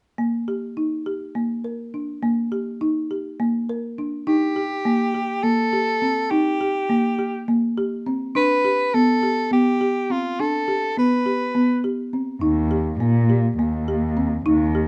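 This restless, playful contemporary instrumental excerpt in Eb lydian moves at 206 BPM in a straight 7/8, opening with woody, rustic folk marimba arpeggios from 0.2 s before a clear, jazz-style soprano saxophone enters at 4.3 s with a scooped, vibrato-tinged solo melody over chords shifting from Eb to Gadd9, and a muted, veiled bowed cello slides in with a boxy bass line at 12.4 s, all set in a dark production with light reverb.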